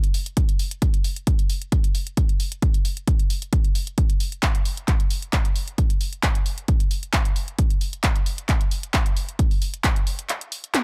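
Driving and relentless, this straight 4/4 techno excerpt at 133 BPM sets a punchy, tape-tinged analog drum machine of handclaps, hi-hat and toms up front in a small, dry room, joined at 0.4 s by a heavy, layered electronic kick that sits louder in the mix before it stops at 9.9 s, leaving the drum machine alone to the end at 10.8 s.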